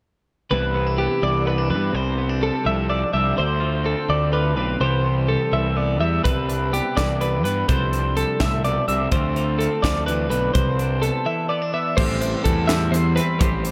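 Two clean, compressed twelve-string electric guitars open this wistful, intricate math rock and midwest emo excerpt in 6/8: one, warm and up front, carries the low accompaniment, while the other spins bright, twangy arpeggios up high, both washed in dub echo over a round, fuzzy, overdriven picked bass. At 6.3 seconds a crisp acoustic fusion kit joins in a small, pumping room, with bright cymbals, a high-tuned snare and a punchy kick, its hits also trailing dub echo. The echo-heavy mix with light reverb circles through Cmaj9, F69/C, Dm7 and Am9/C, pauses for a brief break at 11.3 seconds, then settles onto Am7 at 12.0 seconds.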